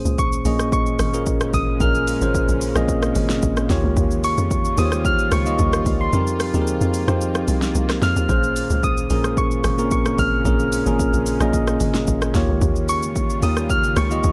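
Amapiano with a soulful, deep mood, carried by a bell-like, up-front tine electric piano and a tight, punchy log drum bass with a percussive FM bite, while a punchy deep house kit of kick, fat snare, rim click, hi-hat and shaker adds vintage 12-bit sampler grit. A cloudy, granular pad enters at 0.9 seconds, sitting in the background with its own built-in reverb and sidechain pumping, and a round, gentle FM synth lead sings high melody through chorus and tape echo. The kick drops out between 6.1 and 8.3 seconds over a suspended chord before the Bbm9 returns, all in a dry, gritty recording cut from a longer piece.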